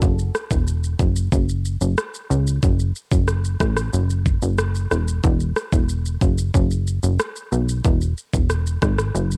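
A punchy analog bass with a sawtooth and square-wave edge, a filter pluck and a fast attack sits up front, its decaying notes moving between E1 and C#2 across the full 9.4 seconds of this tough, hypnotic dancehall clip at 92 BPM in straight 4/4. Beside it, a layered electronic pop drum kit with a knocking kick, rim click and shaker runs throughout, its sound coloured by cassette tape. The piece, tuned to A4 = 438 Hz, has the feel of a home cassette recording set in a digital ambience.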